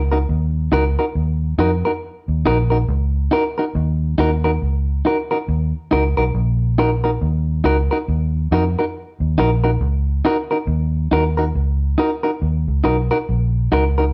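Roots reggae at a slow 69 BPM in Eb minor with a lightly swung sixteenth feel, this hypnotic, meditative fragment of a longer piece pairs a vintage muted fingered electric bass, round, punchy and foam-muted up front, with a clean, compressed electric guitar accompaniment sitting close beside it on a single Ebm chord, the whole band heard live in one large studio room with a moderate reverb.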